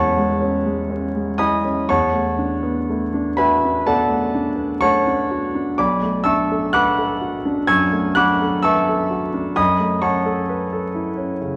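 Set at a slow 63 BPM in 4/4, the rhythm breathes freely with a rubato feel, lending this impressionist classical solo piano fragment a luminous, dreamy mood. A single concert grand carries everything, sounding intimate and smooth with deep bass, a vintage character, and audible action noise, and it sits up front in the mix. Its range stretches from B1 up to G#6, and the harmony drifts from Amaj7 through E9sus4 and Bm7 before settling on F#m11 around 9.6 seconds. The tuning sits at A4 = 435 Hz, and the piano rests in a moderate concert-hall reverb alongside a small-room ambience and a layer of vinyl crackle. Cut from a longer piece, the passage runs just 11.6 seconds.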